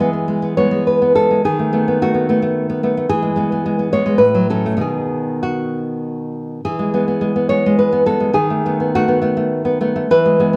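A dark, fingerpicked nylon-string guitar sits up front with audible finger squeak in this nostalgic, romantic classical solo in E major, drifting in a rubato 3/4 between 94 and 111 BPM through E, B7/D#, F#m/A and B chords across a 10.6-second fragment, its acoustic tone carried by a moderate large-studio reverb of a live room performance.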